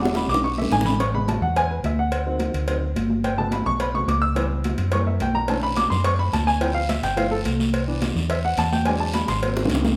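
A live band in one large studio room, wet with reverb, opens this short cut from a longer Afro-Cuban jazz piece, sophisticated and sunny in mood, at a brisk 214 BPM in straight 4/4 in A major. Up front, a worn upright piano with audible action noise and a woody, slightly detuned tone solos throughout, its short-sustained voicings moving through rich extended chords such as Amaj9, Gmaj9#11, Bm11 and G13. Beside it, a dark, round, punchy hollow-body electric bass plays fingered lines low in the mix's foreground. Congas with a thick-skinned, vintage, band-limited sound sit in the background, while tight, high-tuned bongos and cowbell carry a live-room sound, both played with soft hands. A raspy, close and dry guiro scrapes briefly near the start and returns at 5.5 seconds to carry on to the end, and drum fills mark the opening second and the final moments from 9.6 seconds.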